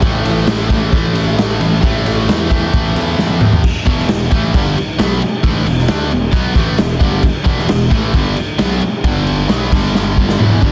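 A raw garage drum kit with a punchy kick, medium-tuned snare and gritty 12-bit sampler character sits up front in a bright stone room, driving this anthemic, swaggering hard rock excerpt at 133 BPM, while a double-tracked, overdriven guitar riff sludges from A5 to E5 at 3.6 seconds and later on to G5 and B5 over a round, fuzz-soaked picked electric bass, with one drum fill leading into the change at 3.6 seconds and the last one arriving at 9.9 seconds under light reverb and a dense, heavily limited master.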